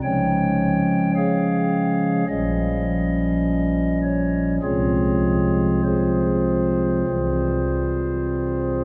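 Classical chorale-style music in F minor, dark and solemn, for a solo pipe organ on a stopped flute stop that sounds soft, hollow and mellow, placed up front with romantic voicing across a range from Bb1 to G5, moving at a rubato 49-54 BPM in 4/4 and tuned to A4 = 442 Hz, through a brief passage cut from a longer piece that moves from Db through Gm7b5/Bb and Fm/C to C, all within a cathedral reverb that hangs for 4.5 seconds.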